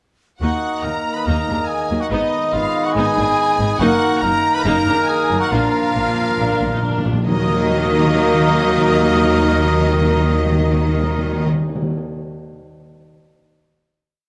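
Recorded close and detailed in a moderate concert hall reverb, this short, complete cinematic piece in Eb harmonic minor has the adventurous, determined sweep of a heroic film score, moving at 140 BPM through a theme that settles onto a final chord at 7.3 seconds. A lush symphonic violin section carries the melody, doubled by a very quiet chamber violin section and a background cor anglais, while a pure flute section and a smooth clarinet hold sustained chords, a rich viola section drives an ostinato, and a distant cello section and focused double bass section anchor the bass. Clear trumpets punch out stabs over a tight, very quiet trombone section and a dark French horn section, and timpani struck with hard mallets enter at 5.5 seconds for a crisp, dry fill that rolls into the closing chord.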